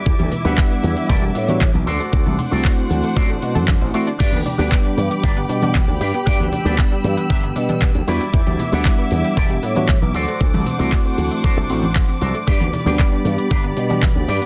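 Nu-disco at 116 BPM in G major, this sunny, feel-good excerpt rides a straight 4/4 groove over a cycle of Em7, D7 and G. A knocking electronic kick sits up front, with a layered pop drum kit of crisp hi-hats, cabasa, handclaps and crash cymbal, while bright congas sound distant in a large room. The slap bass runs through an envelope filter for a growly, punchy line, and an electric guitar, dark and clean with its own envelope filter, picks out a riff with subtle chorus and analog delay. A bright tine electric piano comps through its built-in speakers from 0.4 seconds, pumping with sidechain compression and analog delay, as a veiled, muted string section holds bowed chords with vibrato. In the background, a round analog pluck with a sub octave spins arpeggios through chorus and tape echo, and the whole passage sits in digital ambience under a dense, heavily limited modern master.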